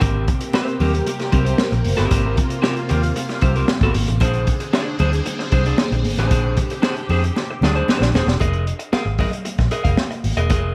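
A dry sound with a layer of vinyl crackle frames this short cut from a longer funk piece, cool and sly in mood with a straight 4/4 feel. Up front, a crunchy breakbeat kit with a high-tuned snare, tight kick and hi-hat sits alongside a round, foam-muted fingered electric bass that sounds dark and amped. An electric guitar through a small old amp plays accompaniment with a slightly broken-up, compressed tone and a touch of spring reverb, while high-tuned congas with a thick skin sit in the background. A bright, swirling string machine holds slow-attack sawtooth chords with ensemble chorus and a phaser's moving notch, moving from Abmaj9 to Bb9 before dropping out at 8.4 seconds. A drum fill from 7.4 seconds leads into a new section on Fm7, where the guitar, bass, drums and congas carry on to the end.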